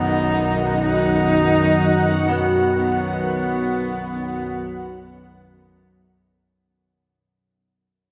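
A husky, earthy horsehead fiddle plays an up-front, tape-echoed melody until 5.6 s in this ominous, dark ambient fragment, over a sweeping, resonant sawtooth pad shimmering with chorus and phaser, a tense, string-like low drone, a bubbling texture of random filter steps, and a barely audible, eerie FM bell arpeggio, set in a vast, echoing cathedral space and fading out from 1.5 s.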